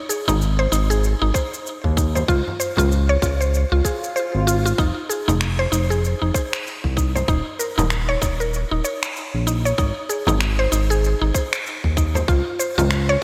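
Bathed in a lush hall reverb with bright 1980s-style digital polish, this meditative, warm organic downtempo passage at 96 BPM with a gentle 16th-note swing sets woody, round arpeggios from an up-front mallet-like synth pluck, treated with chorus and delay, over a smooth, evolving detuned synth bass with sidechain pumping, an electronic shaker with finger snaps, a small, dry frame drum in the background and a tight electronic kick that enters at 1.3 seconds, while an electronic swell sounds in the background at 3.9 seconds as the chords move from Ab through Dbmaj7 and Fm7 to Eb5 in this section cut from a longer piece.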